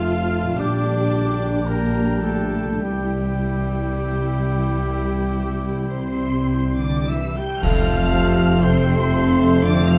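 A slow, tender romantic movement in F major opens with intense, distant violins singing a lush, vibrato melody high above a soft-edged second violin line, a clear clarinet, an airy flute ensemble and an oboe. Beneath them, a dark bassoon and focused viola section accompany while mellow French horns and trombones hold sustained chords, a ringing harp plays arpeggios, and mellow trumpets add soft stabs. Rich cellos, double basses and a close-miked tuba anchor the rubato bass, and from 2.8 s dry, close cymbal swells, clash cymbals and concert bass drum enter, with a full-band accent at 7.6 s, all within a moderate scoring-stage reverb and a dark, warm sound with vinyl crackle.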